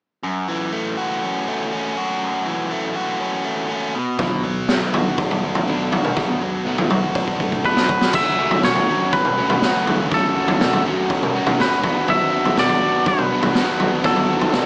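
Restless and moody, this indie rock passage, cut from a longer piece, opens at 0.2 seconds with a biting overdriven guitar riff, picked and up front. At 4.2 seconds a second overdriven riff joins from a hollow-bodied semi-hollow guitar set in the background, coloured by lush chorus and slapback echo. The raw garage drum kit enters at the same moment with a punchy kick, high-tuned snare, toms and crash cymbal, sounding gritty, saturated and mid-forward with a rolled-off top, as if played in a small room. A drum fill leads into the second section, and during that fill, at 7.7 seconds, a bright, clean, twangy electric guitar melody arrives, compressed and carrying its own slapback echo. The harmony moves between F# minor and B minor seventh chords, and the whole mix sits in moderate studio ambience with a small speaker sound.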